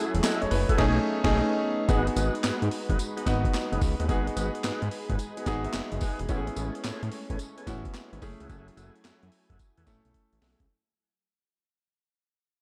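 Bouncy and confident, this new jack swing R&B cut at 109 BPM with a 16th-note swing pairs a gritty, pitched-down boom bap sampler-style drum kit with a thumpy kick, high-tuned snare, handclaps and tambourine, plus a fat sawtooth analog bass with a filter sweep and a clear, polished baby grand piano that takes a fill at 5.2 seconds, all over a slow-rotary tonewheel organ's smooth stabs and a lush, warbling unison pad in the background, moving from a band accent into a fade-out through chords like F#m9, B13, G#m7 and Amaj9 before a drum fill at 10.1 seconds.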